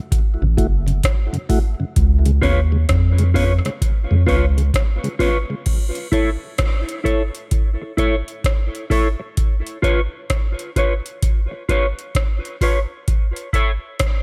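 Heavy and deep, this dub reggae excerpt pairs a booming, overdriven analog drum machine, with metallic hats and rim clicks, with a round sub bass and a flute-like tonewheel organ turning through a slow rotary speaker and tape echo; the bass and organ are gone by 5.6 seconds, while a dark, clean electric guitar with chorus and tape echo enters at 2.4 seconds and carries on through the dry, swung mix.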